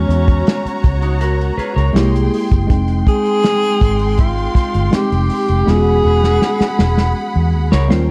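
Romantic and warm, this lush 1970s-style soul piece sets a breathy, mellow tenor saxophone melody with vibrato and scooped notes up front over a bowed, richly vibrato-laden string section and a worn, slightly out-of-tune tine electric piano. A round, foam-muted fingered electric bass and an acoustic soul drum kit with a tight kick drive the groove, and the drums play a fill from 5.7 s. A bright, twangy electric guitar through a small old amp adds a slightly broken-up riff at 1.0 s and returns at 7.7 s, all within a dark production and small room ambience.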